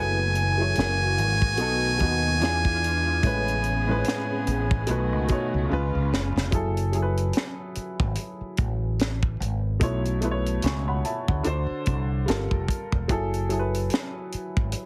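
A muted trumpet opens this soulful, smooth neo-soul excerpt with a buzzy, breathy jazz-style line until 5.7 s, floating over a woody upright piano, a round, dark fretless bass and a lush string section set in the background. At 73 BPM with a swung sixteenth feel in F# dorian, a drum fill from a tight funk kit with a high-tuned snare leads at 6.5 s into a second section in F# minor, where the strings drop away and piano, bass and drums carry on through rich extended chords. The mix has light reverb and a heavily compressed, radio-like sound.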